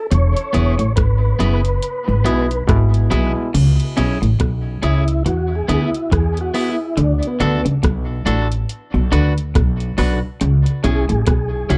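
Hypnotic and meditative, this roots reggae excerpt settles into a slow 70 BPM groove in 4/4 with a gentle swing on the sixteenths, cut from a longer piece and wrapped in a dark production with light reverb. A soft vintage rhythm box supplies a deep analog kick, metallic hi-hats, rim clicks and crash cymbal, while an up-front pizzicato upright bass, woody and growly on steel strings, anchors the low end. Two electric guitars at the edge of break-up share the rhythm duties: one plays a compressed, picked riff in the low register, and the other, twangy and set in the background, adds accompaniment through tape echo and plate reverb. The opening bars carry a band accent, briefly joined by a tight, smooth-topped trombone section with light vibrato between 2.2 and 3.5 seconds, also treated with tape echo and plate reverb. From 3.5 seconds the tonewheel organ takes a solo, its clear, lightly overdriven tone marked by key click, chorus vibrato and a fast rotary speaker, drifting through tape echo and plate reverb over a progression that moves from C#m through E, D and Bm and back to C#m.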